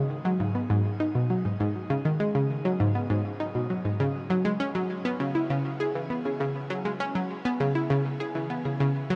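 A straight 4/4 pulse at 100 BPM carries this expansive, hypnotic ambient passage, cut from a longer piece. A lone analog pluck plays from 0.2 to 9.1 seconds, ranging from G#2 to G#4. Its round, detuned, wave-folded tone sits bright and up front, with a fast attack and decay, a filter sweep, and chorus, 12-bit sampler grit and tape echo, all set inside a long shimmer reverb.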